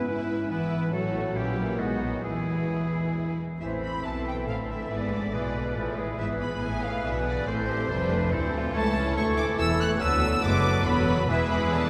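A distant studio violin section with smooth vibrato carries the melody in this graceful, lively classical-period orchestral movement at 140 BPM in 3/4 with a rubato feel, moving from E major to A minor at 3.6 s and on to A major at 8.8 s, as a bright, present oboe, a soft-edged clarinet and an intimate sul tasto chamber violin section weave second lines, joined at 3.6 s by an airy flute section, while lush violas and a warm bassoon accompany, a dark, tight French horn section holds sustained chords, and focused double basses with rich cellos anchor the bass, set in the long cathedral reverb of a church or concert hall in this cut from a longer piece.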